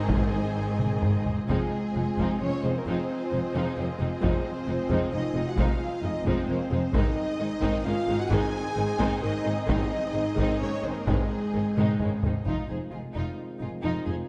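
Epic orchestral film score in a triumphant, majestic 3/4: a lush violin section carries the melody over a second violin line, expressive viola with portamento, a focused string section holding chords until 12.5 seconds, mellow close-miked French horns, woody double basses and warm cellos, and distant taiko struck with hard sticks adding fills in a large room, while a very quiet, bright trombone section sounds only briefly at the start and again from 12.5 seconds, all set in a moderate scoring-stage reverb in this short cut from a longer piece.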